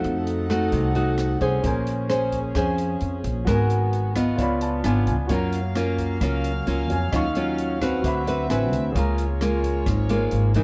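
Smooth and intimate, this short bossa nova excerpt moves at 131 BPM in a straight 4/4, set in Bb minor. A dark, full-bodied fingerpicked nylon-string guitar and a woody, bright pizzicato upright bass sit up front from the start, with an open jazz kit of hi-hat, rim click and a boomy kick in a small room beneath them. A bowed chamber string section holds sustained chords throughout, its gut-string tone reedy with a smooth top. At 1.6 seconds a concert grand piano joins with an intimate, natural sound, audible action noise and long sustain, adding fills around 3.9 and 8.0 seconds. The harmony travels from F7b9 through Bbm9, Abm9 and Gbmaj7 to D13 before settling on Db6, all within a light reverb and a dark production.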